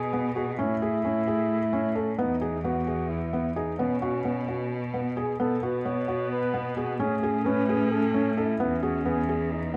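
Playful and hopeful, this short excerpt of contemporary instrumental music moves in a brisk 7/8 at 263 BPM in eighths, set in B mixolydian over chords cycling through B5, Amaj7 and Emaj7. A breathy, dark flugelhorn carries the melody with vibrato and a jazz touch, over a biting, bowed cello bass and felt-muted upright piano arpeggios that sound soft and intimate, with audible action noise. At 5.4 s a clarinet joins on a second line, adding scooped notes and vibrato, all in light reverb.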